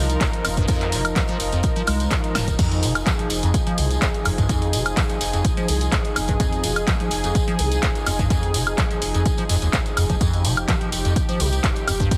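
Acid house at 126 BPM in F minor with a light 16th-note swing, this driving, gritty cut from a longer piece centres on a squelchy, resonant square-wave acid riff with a filter sweep, coloured by phaser, subtle chorus, cassette tape and dub echo. Beneath it sits a deep, saturated sine sub bass, both pumping under sidechain against a punchy analog kick re-recorded in a large room, while a drum machine adds crash, handclaps, hi-hat, snare and woodblock with a fill at 2.4 seconds, and a jingly acoustic tambourine sits low in the mix. A lush, detuned sawtooth unison pad with ring modulation and chorus sustains bright chords over Fm7, also pumping, and the heavily compressed, radio-like mix stays dry.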